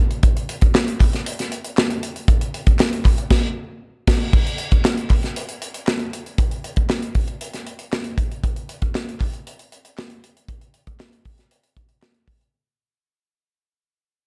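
A modern studio drum kit of crash cymbal, hi-hat, punchy kick and medium-tuned snare sits up front in a pumping studio room from 0.1 seconds, joined at 0.8 seconds by crisp, close group handclaps in the background, carrying a breezy, urban pop groove at 117 BPM in straight 4/4 with a band accent at 3.3 seconds before fading out from 4.3 seconds in this dark, lightly reverberant excerpt.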